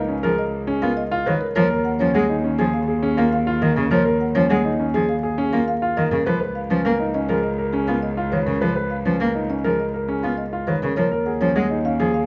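A close, intimate grand piano with audible action noise ripples through arpeggios over a bowed cello bass line with focused vibrato, then a second smooth, even cello adds accompaniment while a mellow, round soft-mallet marimba carries the melody, giving this short cut from a bright, propulsive minimalist classical piece a moderate recital hall glow.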